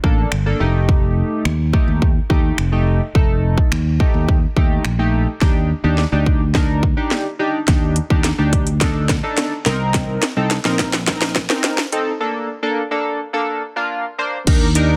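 The sound is dry, dense and heavily limited, a modern master with a high-pass filter trimming the lowest end. This euphoric, carefree dance-pop excerpt moves at 106 BPM in a straight 4/4 in Bb major, cut from a longer piece. A house drum kit sits up front with a punchy kick, cracking snare with soft clipping, metallic hi-hats, finger snaps and a crash cymbal, its layered electronic sound carrying a tape-warm edge. A fingered electric bass, direct and amped, and a retro, glossy polysynth mixing pulse, sawtooth and triangle tones with a sub octave and chorus both pump with sidechain compression, the synth holding mellow sustained chords from Bbmaj7 and F9 to Ebmaj7 and Cm7. From 5.4 seconds a build-up takes hold, with a drum fill and a filter sweep driving it forward, before a break at 12.2 seconds that resolves back onto Bbmaj7.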